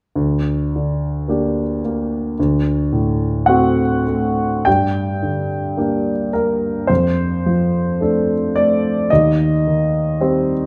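A romantic classical nocturne for solo piano, this brief passage cut from a longer piece carries a wistful, melancholic mood at a slow, rubato pace in 4/4. The grand piano plays alone from 0.2 seconds to 10.7 seconds, reaching from D2 up to G5 with a warm, present tone and long sustain that keeps its notes hanging in the air. Placed up front by close, detailed microphones, the instrument sits inside a moderate recital hall reverb that lends a sense of space around it. The harmony moves through G minor and D7 in the opening phrase, then shifts at 4.7 seconds into a second section that returns to G minor before passing through D minor and C minor colours, keeping the mood melancholic.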